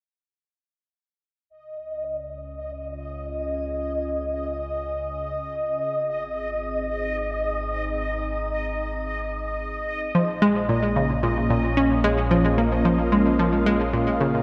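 A straight 4/4 pulse at 111 BPM underpins this cosmic, mysterious piece of sequencer-driven ambient space music, tuned to A4 = 438 Hz and cut from a longer work. From 1.5 seconds a swirling, detuned sawtooth pad fades in with sustained chords, its slow attack and long release colored by phaser, chorus and shimmer reverb. At the same moment, a deep, round sine sub bass fades in beneath it. A bubbling, resonant stepped-filter texture sits up front, holding a high Eb5 through random filter steps, chorus and its own built-in reverb. At 10.1 seconds a bright analog pluck enters, blending sawtooth, square, triangle and a noise layer with ring modulation and a filter sweep; its fast attack and short decay are thrown into tape echo and shimmer. The harmony moves from Db to Ab to Bb minor in a wet, echo-heavy mix bathed in spring reverb.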